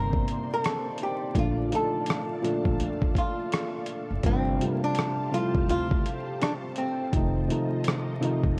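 A gritty, overdriven sampler-style drum kit sits up front with a thumpy kick, hi-hat and rim click, entering at 0.1 s under a hazy, melancholic lo-fi hip hop groove at 83 BPM with a 62% swing on the 16ths. A dark, hollow-body archtop guitar picks the melody through tape echo over a thick-felt upright piano with a cassette-tape tint, a woody gut-string upright bass played pizzicato, and sustained sawtooth string-machine cellos with ensemble chorus. The chords move from Cm9 through Bbmaj7 and G9sus4 to F7 in this excerpt, all wrapped in light digital ambience and vinyl crackle.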